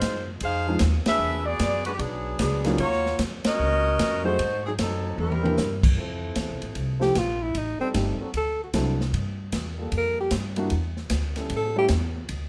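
A mellow saxophone section opens this joyful, brassy big band swing excerpt at 152 BPM, carrying the melody over a woody pizzicato upright bass and a swinging, punchy drum kit with dark cymbals and a medium-tuned snare. A warm, natural-sounding upright piano joins the accompaniment at 0.7 seconds, and the band hits accents together before a short drum fill leads into the second section. At 6.0 seconds the music settles into F major as the saxophone section drops out and a soft-attack trombone section takes up sustained chords with light vibrato. A clear, close-miked alto saxophone then steps forward for a solo, its vibrato and scooped notes sitting up front. The chords move through rich jazz changes, light reverb surrounds the band, and the drums keep an airy, polished hall sound until the passage is cut off.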